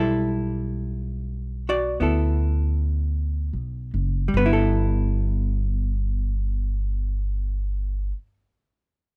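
A dark, clean hollow-body electric guitar and a woody, thumpy pizzicato upright bass on gut strings open together on a G69 chord, both sitting up front in a dry, intimate room. This romantic, swung jazz ballad eases and slows through its first 4.3 seconds before moving into a new section, with the picked guitar comping above the bass's shadowy low notes. Cut from a longer piece, the bass stops at 8.1 seconds and the guitar at 8.3 seconds.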